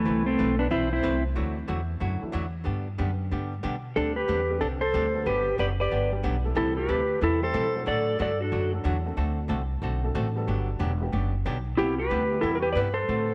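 A clean, compressed lap steel guitar opens with slide and volume swells, shadowed by a soft-attack, vibrato-laden clarinet over woody pizzicato upright bass, while a picked hollow-body archtop guitar accompanies and a mellow, vintage upright piano with audible action noise sits in the background in this cheerful, swinging western swing excerpt, the lap steel and clarinet returning at 4.0 and 11.8 seconds.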